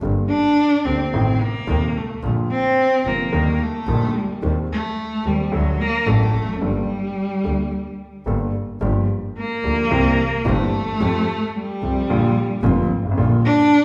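A rubato tango in 4/4 at about 109 BPM, this short piece in G minor feels playful and nostalgic, as though cut from a longer performance. A baby grand piano carries the accompaniment with a present, up-front tone, while a single bowed double bass supplies the low line with a biting, earthy edge and light vibrato. From 0.3 seconds a cello takes the solo as the second line, bowed with expressive vibrato and sliding portamento; it sits up front yet carries a distant quality. The harmony opens on G minor with an added ninth, passes through A diminished, B-flat, E-flat major seventh and D, then shifts to G minor seventh, C7 and F with an added ninth before settling on G minor seventh over B-flat. The phrase restarts at 8.8 seconds. The players sound as though in a church or concert hall, with a wet recital-hall reverb of 1.3 seconds around the ensemble, and the cello rings on until 13.8 seconds.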